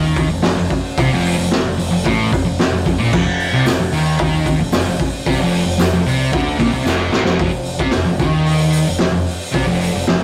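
A straight 4/4 pulse at 112 BPM drives this swaggering, rowdy garage rock excerpt in F major, cut from a longer piece. A double-tracked, fuzz-drenched guitar riff sits up front from the first second, anchored on an F5 chord, while a growling picked electric bass, overdriven and thick with tube saturation, sits an octave below. The raw acoustic drum kit joins at 0.2 seconds with a boomy kick, medium-tuned snare, hi-hat and crash, sounding gritty and mid-forward with a rolled-off top. A very quiet, jingly tambourine slips in close and dry at 3.7 seconds and drops out at 7.0 seconds, just as a drum fill kicks the tune into its second section at 7.4 seconds. The whole take carries the rough, saturated character of a rehearsal-room recording, with a moderate stone-room reverb giving the band a live-in-the-room presence.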